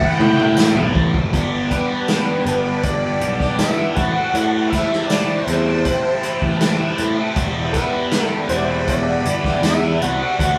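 Mysterious and hypnotic, this psychedelic rock piece opens on a drum fill from a punchy vintage kit while a swirling, phased string machine holds chords in the background and a biting, double-tracked overdriven guitar riff and round fuzz bass sit up front; a jingly tambourine joins, and at 1.7 s a fat, warbling analog lead with chorus and vibrato enters as the harmony moves from Am through G, Am7 and Em7, all played live in a stone room.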